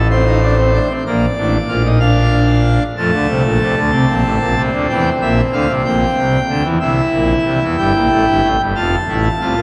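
Contemplative yet driving, this baroque-style three-part classical fugue for solo pipe organ moves at 62 BPM in a straight 12/8, its full organ with mixtures sounding majestic and brilliant in a romantic voicing placed up front, spanning F1 to A5 at A4 = 439 Hz, while a long cathedral reverb of 4.8 seconds and a dark production frame the harmony as it passes from a rootless F7/A through Bb, F, Edim and C7 to F at 8.7 seconds in this 9.6-second passage cut from a longer piece.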